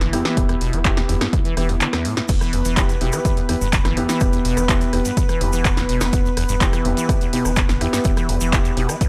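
Trippy and driving, this short acid house cut moves at 125 BPM in a straight 4/4, sitting on E minor throughout. A squelchy, resonant sawtooth acid bass riff runs from the start with tube saturation, lush chorus, tape echo and sidechain pumping, over a thick sine sub bass that also pumps beneath it. A smooth, detuned analog pad holds sustained chords with chorus and the same pumping, while a dark baby grand piano adds mellow, short stabs trailed by tape echo. A punchy analog drum machine supplies crash, handclaps, hi-hat, rim click and snare with a short room on the snare, clap and hats, and a tape-warm electronic kick drum arrives at 0.4 seconds. Grainy, distant maracas join in the background of a large room at 2.3 seconds. The overall sound is a dry, gritty hardware recording with transformer saturation and a digital ambience.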